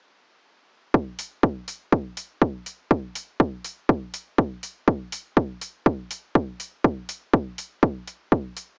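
A dry home cassette recording with a small-speaker sound carries this short cut from a longer piano house piece, joyful and euphoric at 122 BPM in 4/4 with a light 16th-note swing. A punchy, layered electronic kick drum sits up front from 0.9 seconds, and a metallic electronic hi-hat enters at 1.2 seconds, much quieter beneath it. Both drums share a tape-warm, produced character until the hi-hat finishes last at 8.7 seconds.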